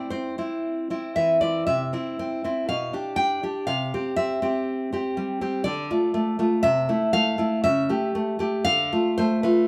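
The rhythm moves at a slow 60 BPM in 2/4, with uneven beats and a free rubato that lets each phrase breathe. This romantic piece for solo classical guitar sits in A minor and carries a melancholic, passionate mood across its 9.7 seconds, cut from a longer work. The nylon-string guitar is fingerpicked and sits up front, its fresh strings giving a bright, acoustic tone with a deep classical character, ranging from B2 up to G5. The harmony opens on a rootless A minor, then moves through C, G7 over B and back to C before turning to D minor, A minor over C, and A7 over C sharp, landing on D minor at 8.7 seconds. Light reverb frames the instrument, which was recorded live in a single room and tuned slightly high, to A4 = 441 Hz.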